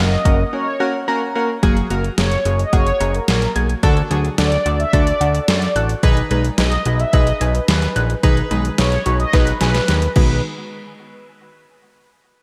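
An overdriven deep house drum kit with a deep kick, deep snare, metallic hats and gated reverb sits up front in this wistful, upbeat synth-pop excerpt at 109 BPM in B major, playing alongside a fat, saturated analog bass, chorused analog keys, a dark, full-bodied synth brass melody with vibrato and delay, and a soft, round pluck playing arpeggios in the background, all wrapped in a lush hall and bright 1980s-style digital production, with a break from 0.5 to 1.6 seconds and a drum fill from 9.3 seconds.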